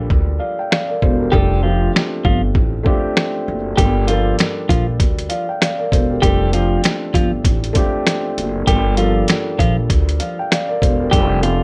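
A dark, mellow grand piano with audible action noise and cassette-tape filtering opens this reflective, moody boom-bap hip-hop excerpt alongside a woody, pizzicato upright bass on gut strings and a compressed, pitched-down sampler-style kit with a thumpy kick and medium-tuned snare, before a clean, fingered electric guitar carrying delay takes the melody from 1.3 seconds over a swung groove, all set in light reverb with a worn, warbling old-tape pitch drift.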